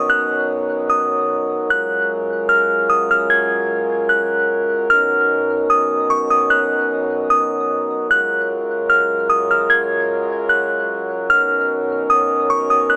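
Floating and dreamy, this half-time hip hop excerpt moves at 150 BPM in F# major, drifting between Bmaj7 and F#maj7 chords across its 13 seconds. A delicate, tinkling FM synth tine bell carries the high melody up front, its bright, fast-attack notes decaying through chorus and tape echo, while a mellow French horn section holds tight, classical-style sustained chords beneath. The whole piece sits in a moderate, lush hall reverb with an AM radio tone, and the horns carry a distant, roomy quality.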